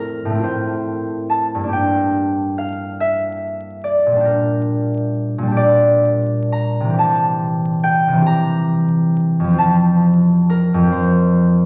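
A rubato 6/8 sway carries this graceful, dreamy classical excerpt for solo concert harp, which rings warm and up front across a range of F2 to Bb5 over its 11.7 seconds. The harmony drifts from F/A through Gm and Gm/Bb to C7 before settling on F at 9.6 seconds. A wet recital-hall reverb of 1.8 seconds and a vinyl crackle give the recording a dreamy haze.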